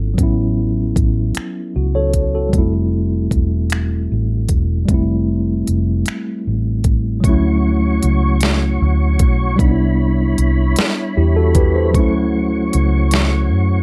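Dark, lightly reverberant production frames this sensual, intimate slow R&B excerpt in 6/8 at 51 BPM, where a mellow, clean tine electric piano moves from A69 to Fmaj7 over a round, foam-muted fingered electric bass and an up-front electronic drum kit of finger snaps, smooth hats, a knocking kick and deep snare, until a clear, lightly overdriven tonewheel organ with chorus vibrato, key click and slow rotary speaker enters at 7.2 s with sustained chords over Dmaj7, Cmaj9 and Dmaj7.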